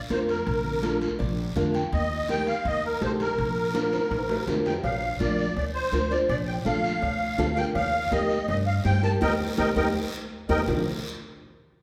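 A straight cumbia groove drives this festive, sunny clip from a longer piece, with bright, high-tuned congas in the background, a raspy guiro and faint, ringing timbales and cowbell set back in the room. Up front, a reedy, shimmering musette accordion carries the melody over woody pizzicato upright bass and a fingerpicked classical nylon-string guitar, which adds a fill at 0.8 seconds. The whole band sits in a resonant recital-hall reverb, and a drum fill and band accent lead into the return to the home chord at 10.7 seconds.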